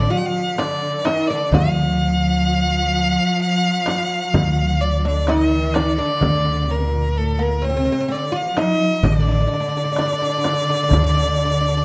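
In a straight 10/8 at 128 eighth-note beats per minute, this passionate, stately fragment of an Arabic maqam ensemble piece in D maqam huzam sets a clear, up-front bowed violin singing the melody with vibrato over a deep, woody plectrum-plucked fretless oud and a lush symphonic cello section given a slapback echo, while a pizzicato steel-string upright bass anchors the low end and a crisp metal-shell darbuka and a soft-handed frame drum sit in the background, all caught by close, detailed microphones in light reverb with a faint mains hum.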